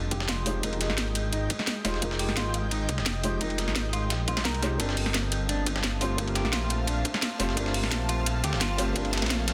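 A lightly reverberant, densely limited mix opens this dreamy, lush liquid drum and bass excerpt at 173 BPM, where an up-front, menacing detuned saw bass and a shimmering, ethereal pad with chorus and sidechain pumping sit alongside a dark, boxy baby grand piano with dub echo, a clean picked electric guitar playing filtered arpeggios in the background, a cracking garage kit layered with a gritty, tape-toned sampler-style kit and a tight electronic kick, all over a build-up moving from Fm11 to Gm11 at 4.8 seconds before a very quiet riser enters at 8.3 seconds.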